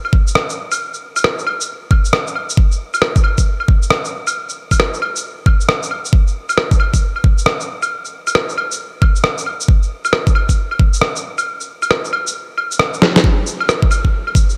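Dry and close, this future garage excerpt at 135 BPM swings its 16ths in 4/4 and carries a rainy, ghostly mood. Up front, a layered, knocking electronic kick sits in a small room, while muffled, pitched-down claves, shaker, rim click and a medium-tuned snare arrive compressed and tape-warm from a large room. The kick drops out from 11.5 to 13.2 seconds, and a drum fill lands at 13.0 seconds before the pattern returns.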